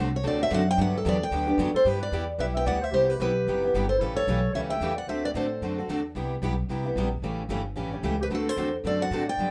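Light reverb gives this lively, swinging excerpt of acoustic string swing a gentle sense of space. Two picked steel-string guitars play the accompaniment throughout, one full-bodied and set in the background, over a woody, thumpy, dark pizzicato upright bass with gut strings that sits up front. A picked steel-string guitar carries the melody and takes a solo at the start; a distant, raspy growling clarinet with subtone, light vibrato and scooped notes adds a second line from 1.7 seconds, and both lines drop out around 5.8 seconds before returning at 8.2 seconds.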